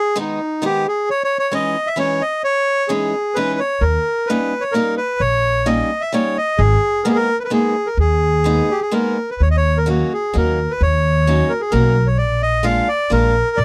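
Whirling and bittersweet, this short cut from a longer musette waltz sways in three with a loose, rubato feel. A reedy bandoneon carries the melody from the first moment, its tone bright, full and dry, miked closely and placed up front. A picked steel-string acoustic guitar with a boxy, parlour character enters at 0.2 seconds to supply the accompaniment, sitting just as forward. The upright bass joins at 3.8 seconds, its pizzicato notes woody on steel strings and prominent beneath the other two. Around 9.4 seconds the harmony moves into a contrasting passage, all heard in an intimate 1970s-style studio sound with little reverb and a faint mains hum underneath.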